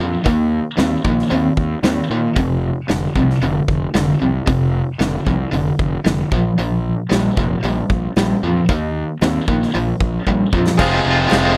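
Classic rock with a swaggering, brooding edge, this dry, close clip pairs a bright, picked distorted electric guitar riff with a tremolo-treated overdriven electric guitar in the background, a round, fuzzy fingered electric bass up front and a punchy big rock drum kit that plays a fill from 10.3 seconds, before a barky, reedy electric piano with fast tremolo and a very quiet double-tracked fuzz guitar join at the close around 10.8 seconds, followed by a faint, distant group handclap at 11.3 seconds.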